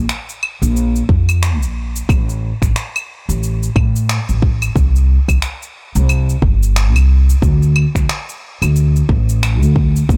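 Mystical and warm, this organic downtempo excerpt moves with a relaxed, swung sixteenth-note feel in 4/4. A pizzicato upright bass carries the low end from the start, its gut strings giving a woody, thumpy, dark tone that sits up front and picks up a transformer-saturated grit. At 0.1 seconds a layered, produced bed of electronic finger snaps, cabasa and claves joins at a low level in the mix, touched by studio reverb, with soft clipping on the snare. A deep electronic kick drum arrives at 1.1 seconds, placed up front and also carrying studio reverb. The overall recording is dry and blown-out, with a heavily overdriven sound across the whole mix.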